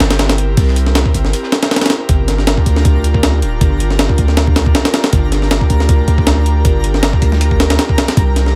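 A breathy, chorused pad, a deep sine-toned 808-style bass and a gritty, pitched-up breakbeat kit all start together in this nostalgic, atmospheric drum and bass and jungle excerpt, with its lightly swung sixteenths. The sampler-style breakbeat sits up front, compressed and tape-warm, with a thumpy kick, a medium-tuned snare and hi-hat carrying the sound of a small room. Beneath it, a very quiet second kit of saturated acoustic hi-hat and high-tuned snare, dark and rolled-off at the top, adds a crunchy layer until 2.0 seconds. The pad holds soft, detuned sustained chords over the long, mellow bass, moving from C7 to Gm7 at 2.1 seconds after a short break. From 2.8 seconds a faint, twinkling granular texture enters in the background, its octave-up FM shimmer carrying its own reverb while the rest of the mix stays dry.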